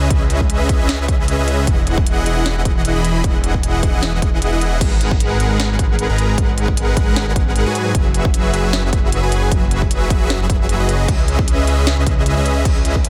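A dense, heavily limited modern master in a digital ambience carries this bright, euphoric future bass excerpt at 153 BPM in E lydian, with a half-time feel and a light swing on the sixteenths. Huge, up-front supersaw chords carry the riff from start to finish, pumping with sidechain and trailed by digital delay as the harmony moves from C#m9 through Emaj9, G#m9 and F#9sus4 before returning to C#m9 at 11.1 seconds. Beneath them sits a thick, chorused detuned saw bass that also pumps, while a punchy, overdriven layered kick and a trap kit with a sharp snare, crisp hats and crash cymbal drive the groove from 0.1 seconds.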